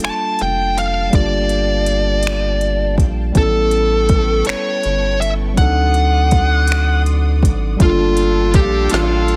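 A bright, barky electric piano, distant lush strings, a rubbery, bouncy square-wave bass and a smooth R&B drum kit with soft kick, woody snare and finger snaps open this sultry, yearning slow six-eight R&B passage cut from a longer piece, as an up-front fuzz lead guitar carries the distorted melody from 0.1 seconds and a punchy horn section adds stabs at 7.8 seconds.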